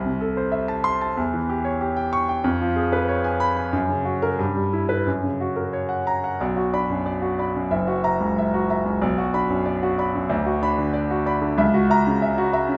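Passionate and stormy, this short classical excerpt of a virtuoso piano study in 2/4 unfolds with rubato freedom as a solo grand piano, present, polished and up front with long sustain, ranges from F#1 to C#6 through restless chromatic harmonies before settling at 6.4 seconds into a passage that turns between Bm and F#7, all bathed in a wet recital hall reverb.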